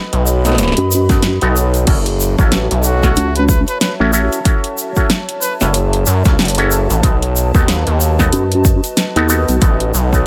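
A swung 93 BPM glitch hop groove in 4/4 struts through this swaggering, gritty excerpt in F# dorian, built on a punchy overdriven electronic kick from 1.1 seconds and a pop drum kit with a fat snare and metallic hats, both up front and roughened by a small-room re-recording, plus a grainy, bright tube shaker. A saturated sawtooth synth bass with oscillator sync growls underneath, joined at 0.8 seconds by a nasal, wobbling formant-filtered bass with chorus, while a stringy, hollow auto-wah clav fires overdriven stabs through pumping sidechain and digital delay, and a moody, detuned analog pad sits in the background over chords moving from B7 to F#m7 and back. A mellow, close-miked trumpet with light vibrato and a soft attack offers a brief classical-style solo line between 2.8 and 5.7 seconds, echoed by digital delay, all set in a digital ambience.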